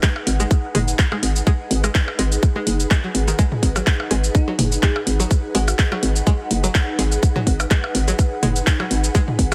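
A tight, up-front electronic kick drives this quirky, sparse minimal techno cut at 125 BPM in G# minor, alongside a booming analog drum machine with handclaps, metallic hi-hats and shaker, background percussion blips and toms soaked in dub echo, a twangy string-like resonator pluck riff with chorus and pumping sidechain, and an ethereal, airy pad drifting through phaser and reverb over a G#m7 chord. From 0.3 s a hollow, bouncy FM bass knocks up front with sidechain pumping, and between 4.3 and 5.7 s a bell-like, sparkling FM electric piano briefly surfaces in the background, echoing and warbling. The swung sixteenths sit in a light reverb under a heavily compressed, radio-like sound in this excerpt from a longer piece.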